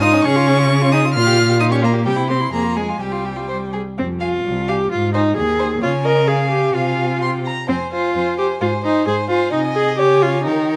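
Restless and dramatic, this quick classical-period movement for string quartet moves at 130 BPM in a straight 2/4, set in F minor and tuned slightly above standard pitch at A4 = 441 Hz. All four players sound throughout the 10.8-second passage, cut from a longer piece, with the first violin carrying the melody high between G5 and F6 in a rich, focused tone with vibrato. The second violin spins a smooth, even second line from Db4 up to C6, while the viola's clear, up-front accompaniment sits between G3 and Bb4, the most prominent voice in the balance. Beneath them, the cello anchors the bass from C2 to Eb3 with a rich, focused sound and a smooth top, also placed close to the listener. The harmony shifts from Db through Bbm6 and C to a Csus4 before a second section begins at 4.0 seconds, moving through Db, Fm/C and Ab to settle back on Db at 10.0 seconds. Close, detailed microphones capture each bowed line, framed by a moderate recital-hall reverb of about 1.6 seconds.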